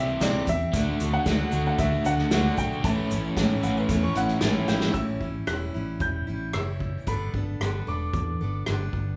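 Light small-room ambience frames this nostalgic folk rock and heartland rock piece, where a mellow, vintage-toned grand piano carries the melody over a bright, freshly strung picked acoustic guitar with audible finger squeak, a punchy fingered electric bass and a roomy, distant-sounding acoustic drum kit played with bundle sticks. A crunchy, double-tracked overdriven guitar riff and a grainy egg shaker in the background fill out the opening, joined at 3.6 seconds by a round, double-strung mandolin line. After a drum fill at 4.7 seconds, those three parts stop at 4.9 seconds.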